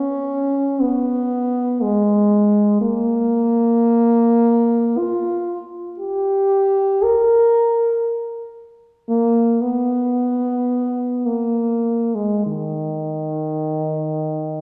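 Mournful and meditative, this classical excerpt features an unaccompanied French horn playing freely and expressively in free time. The dark horn sits up front with a smooth top, ranging from D#3 to A#4 across its 14.6 seconds. A wet recital hall reverb surrounds the instrument, giving the lone line a spacious, reflective air.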